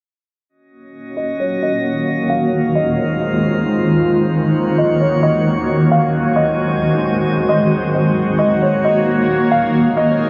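Hazy and melancholic, this half-time hip hop excerpt at 133 BPM in Eb dorian drifts through Ebm7, Fm7 and Ab7 chords under a filter sweep and a huge ambient reverb, giving a dark production. A glassy harmonics texture with drifting overtones and chorus appears first at 0.9 s. A felt-muted upright piano follows at 1.2 s, playing a soft, intimate melody through a low-pass filter and digital delay. At 1.3 s a cloudy, detuned granular pad arrives up front with full-bodied, blurred sustained chords.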